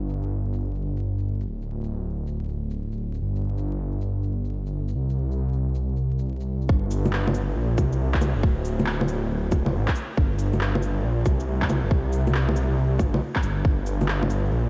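A menacing, detuned sawtooth bass swells through this ghostly, rainy future garage excerpt, its saturated tone pumping against the sidechain. Overdriven electronic shaker, cabasa, bongos and handclaps carry a swung groove with gritty 12-bit sampler texture and a muffled filter. At 6.7 seconds a tight, overdriven kick drum joins up front, all of it sitting in a dry mix dusted with vinyl crackle.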